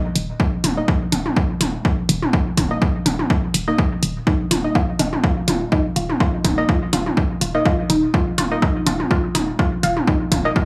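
An overdriven analog hi-hat with a light swing on the sixteenths opens this hypnotic, sparse minimal techno excerpt, soon joined by an equally overdriven, punchy kick drum that sits up front. Beneath them, a hollow, bouncy FM bass with a fast attack and dark decay knocks low in the register, pumping through sidechain compression. Layered electronic toms with a tape-warm, small-room character are thrown into dub echo, while a muted, mellow sawtooth chord stab drifts through chorus, cassette tape coloring and its own dub echoes. At 4.3 seconds a squelchy, resonant blip pluck enters, a detuned sawtooth riff with a noise layer that sounds juicy and bright through phaser, analog chorus, cassette tape, sidechain pumping and dub echo. A light studio reverb gives the whole groove a modest sense of space as it runs to its cut-off at 10.7 seconds.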